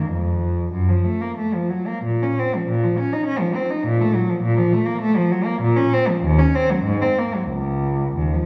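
Solemn and introspective, this short excerpt from a classical, baroque-style suite movement for solo cello unfolds in a rubato 3/4 at roughly 89-104 BPM, tuned to A4 = 438 Hz. A single bowed cello, warm and expressive with vibrato and portamento, plays throughout the 8.5 seconds and ranges from Db2 to Eb4. Its sound is up front yet distant, heard from further back in a recital hall whose wet reverb lingers for 1.6 seconds.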